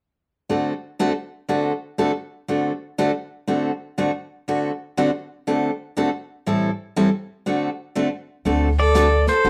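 A studio sound with a moderate room reverb frames this swinging, down-home slice of country western swing, cut from a longer piece and moving at 121 BPM in 4/4 with a swung eighth-note feel in D mixolydian. For the first eight seconds a bright, picked steel-string acoustic guitar carries the accompaniment alone, sitting up front over a D7 that shifts to Am7 and back to D7. At 8.5 seconds an up-front upright bass enters, plucked, woody and thumpy, alongside a jazz brush drum kit with an airy, medium-tuned brushed snare and hi-hat tucked into the background. At 8.8 seconds a clean, twangy pedal steel guitar takes the melody with fingerpicked slide lines and volume swells, joined by a smooth, clear fiddle holding a bowed second line with light vibrato. The closing moment gathers the full band together in a swinging, down-home groove.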